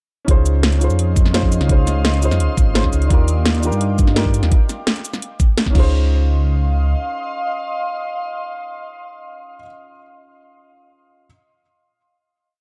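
A rolling two-step groove in straight time drives this short, lush liquid drum and bass piece, with a knocking, up-front electronic kick under a layered kit of cracking snare, metallic hi-hat, shaker and crash, both stopping at 5.8 seconds. A deep, rumbling detuned saw bass with tube saturation carries a dub-style line, while a mellow, boxy baby grand piano with delay plays rootless held chords with syncopated pushes and a glassy FM pad with ensemble chorus and reverb sustains ethereal chords above. The dry, dark production closes on a final hit from 5.9 seconds, with the piano sounding until 11.3 seconds.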